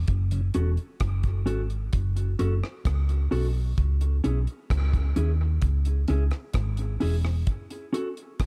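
An echo-heavy studio mix frames this heavy, deep dub reggae excerpt at a slow 65 BPM in straight 4/4, moving from F#m to C#m and back. Up front, a round, amped hollow-body short-scale electric bass, played with the fingers, holds down the low end until 7.4 seconds, beside a dry acoustic reggae kit of tight kick, hi-hat and rim click with a smooth, rolled-off top. A clean, compressed mellow electric guitar, fingered and dark, sits further back with a high-pass filter and dub echo, carrying on into the closing break at 7.5 seconds.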